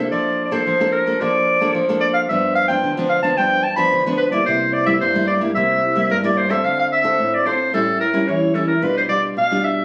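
A straight samba rhythm in 4/4 drives this short passage, taken from a longer piece, and its mood is bittersweet and yearning. A small, fingerpicked nylon-string guitar supplies the accompaniment from the start, sounding acoustic and close. The clarinet carries the melody from 0.1 s as a forceful jazz-style solo, bright and punchy, shaped with vibrato and scooped notes, and treated with plate reverb that gives it a distant, roomy cast even as it sits up front. The harmony moves from Bbmaj7/F through G7 and C7, then shifts into D minor at 6.6 s with Dm7, A7 and G7/B as a new section begins. Captured on a phone in a studio, the sound carries a moderate room ambience around both players.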